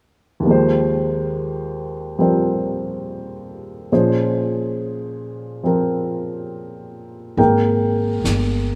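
An up-front, woody upright piano opens this tender, late-night jazz ballad at 0.4 s, playing a swung accompaniment in 4/4 over rich chords that move from Ab69/Eb to Bbm7. At 7.4 s, the excerpt shifts into a new section on Abmaj7sus2: a pizzicato upright bass with a warm, steel-string tone joins up front, and a softer brush kit adds a high-tuned snare and hi-hat. A lush hall reverb surrounds the rough, homespun demo mix until the fragment breaks off at 8.8 s.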